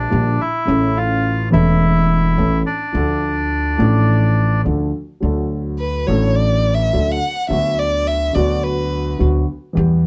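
A rubato tango in 4/4 opens this melancholic, dramatic fragment of a longer piece, its pulse stretching and pulling with the phrasing. A reedy, vintage-toned bandoneon carries the melody up front until 4.6 s, while a dark concert grand piano gives mellow, deep-voiced accompaniment with short, smooth sustain. Underneath, a pizzicato upright bass adds a woody, growly, thumpy low end throughout. At 5.8 s a single bowed violin steps forward with a second line, its soft attack, vibrato and portamento lending an expressive, intimate warmth. The production is dark and warm, with light reverb giving the close, up-front instruments a gentle sense of space.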